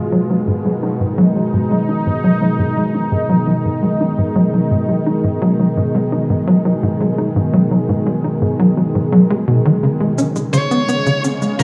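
Cosmic and hypnotic, this stretch of ambient, sequencer-driven space music is cut from a longer piece and moves in a straight 4/4 over a G#m chord that shifts to C# at 10.2 seconds. A sweeping, resonant pad holds sustained chords from the start, its detuned sawtooth layers and noise layer giving an airy, evolving glow, with a slow attack, filter swell, long release and chorus, sitting bright and up front. Beneath it, a tight sequencer bass drives a punchy riff, its dark, plucked filter tone blending sawtooth, square and triangle waves, fattened by analog chorus and tape echo. Near the close, an electronic cabasa with an analog character slips in quietly, and at 10.5 seconds a high-gain electric lead guitar, distorted and picked, cuts in up front on C#5. An enormous, wet ambient reverb with an 8.0-second tail bathes the soundscape.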